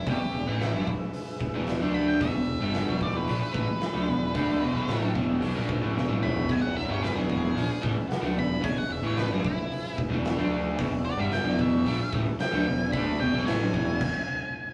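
A distorted octave-fuzz lead guitar solo opens this swaggering, raw garage rock excerpt at 112 BPM in E mixolydian, over a mellow vintage combo organ with light vibrato in the background, a round, punchy fuzz fingered bass, a bright double-tracked crunchy overdriven guitar riff with spring reverb, and an up-front, gritty, oversized low-tuned drum kit with a fat snare, boomy kick and dark cymbals that plays a fill at 6.0 s, all caught in a rough, tube-saturated rehearsal room until the band stops at 14.0 s and the lead guitar continues to 14.7 s.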